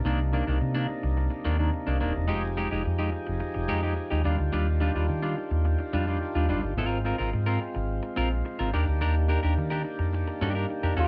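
A glamorous, danceable disco groove at 107 BPM opens on a round, dark fingered electric bass up front and a gritty overdriven tonewheel organ holding sustained chords through a slow rotary speaker, joined at 0.1 seconds by a twangy, slightly broken-up electric guitar comping over lush minor-ninth and major-seventh harmonies. The band sounds live in a small, wet room. Only at 11.0 seconds does a warm flugelhorn with light vibrato touch in on a single melody note as the cut ends.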